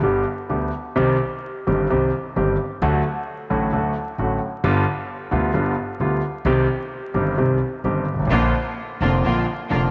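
A polished, up-front concert grand piano opens this passionate, elegant tango fragment, its clear, deep-bass accompaniment joined from the start by a woody, thumpy pizzicato upright bass at a rubato 131 BPM in 4/4. The harmony moves from G through Cm, D and G7 and back to Cm before a symphonic string section cuts in with intense, bowed stabs at 8.3 s over a Bb chord, their light vibrato and smooth top carrying the excerpt to its close. A moderate plate reverb and a layer of vinyl crackle lend the recording a vintage sheen.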